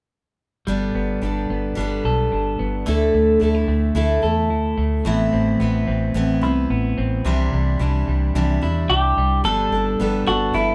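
A clean, hollow-bodied semi-hollow electric guitar takes the melody near the close, entering at 8.9 seconds and sitting up front over the band. This breezy, nostalgic indie pop fragment in G major moves at 109 BPM in a straight 4/4. From 0.7 seconds a full-bodied, up-front acoustic guitar picks through Gadd9, Dsus2, Amadd9 and Cadd9, beside slightly broken-up, twangy arpeggios from an electric guitar through a small old amp and a round, punchy foam-muted bass, all playing live together in a modest small room.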